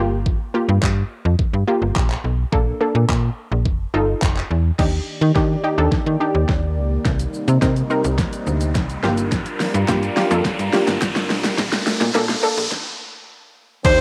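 A snappy, metallic FM bass with a slap-like bite sits up front in this driving, energetic dance-pop excerpt, its sidechain pumping shared by a lush, detuned sawtooth unison pluck that carries the chords through Gm7, Bbmaj7 and F7. An electronic pop kit joins almost at once, its knocking kick, fat snare, hi-hat, shaker, handclaps and crash overdriven and re-recorded in a small room. From 4.8 seconds an evolving, chorused pad with a slow filter swell enters as the music builds over Ebmaj7 and Cm7, with a filter sweep and a long drum fill. An electronic riser and downlifter arrive from 7.2 seconds, and a barely audible group handclap adds crisp human texture. After a stop near the end, a tight, warm horn section with octave doubling and light vibrato bursts in at 13.8 seconds, just as the clip cuts off, while the pluck, pad and drums carry a hazy cassette-tape grain in light digital reverb.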